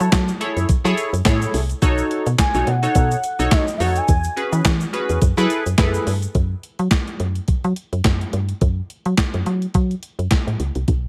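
A dry, up-front mix opens this excerpt of danceable early-eighties boogie funk at 106 BPM in F# dorian, where a gliding, detuned portamento lead with chorus and slapback echo sings until about 4.5 seconds over punchy sawtooth polysynth chords and a grainy tube shaker that last until about 6 seconds, while a woody, round FM bass and a thumpy, 12-bit drum machine with handclaps and gated reverb carry on through about 11 seconds once the chords drop out.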